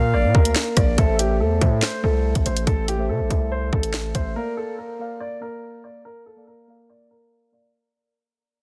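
Hip hop in a drill style, this short cut from a longer piece feels menacing and tense, riding a half-time groove. A dark, mellow baby grand piano carries the melody with long sustain, softened by a low-pass filter and trailed by delay. Beneath it, muted felt-like synth keys give intimate, soft accompaniment with a chorus shimmer. A silver concert flute offers a brief airy, tongued second line with unsteady vibrato, sitting in the background and gone by 0.5 seconds. Up front, a distorted, saturated 808-style bass hits heavy and aggressive beside a drill kit of hard-clipped kick, sharp snare, bright hats, handclaps and rim clicks; the kit drops out around 4.2 seconds and the bass around 4.4 seconds. The dense, heavily limited mix stays dry, and from 1.0 seconds a filter sweep and fade-out take hold as the chords move from B-flat to A minor and back.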